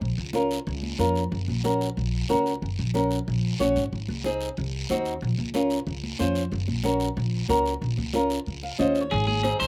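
Driving and fiery, this cumbia excerpt in 4/4 opens on a woody, thumpy pizzicato upright bass sitting up front, with high-tuned congas struck by hard hands in the background and a raspy, close guiro scraping along. At 0.3 seconds a fingerpicked flamenco guitar joins, also up front, its tone carrying a slapback echo as it moves through a minor-key progression that circles back to its home chord. A nylon-string guitar fill at 8.5 seconds leads into the final moment. At 9.1 seconds a bright, twangy electric guitar at the edge of break-up takes the melody, with a spring reverb on its picked, scooped notes. Ringing metal-shell timbales enter there as well, set back in the mix, while the sound overall stays dry and open-air.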